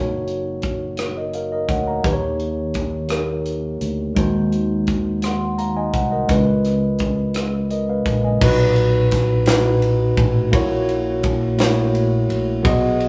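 Slow gospel in a straight 6/8 with a reverent, hopeful mood, built on a mellow, up-front tine electric piano whose clean chords move from F#6 through Bmaj7, a dark, round fingered electric bass, and a crisp, airy fusion drum kit with a high-tuned snare and punchy kick entering at 0.3 seconds, all captured as a band playing live in a small room with moderate studio reverb, cut from a longer piece.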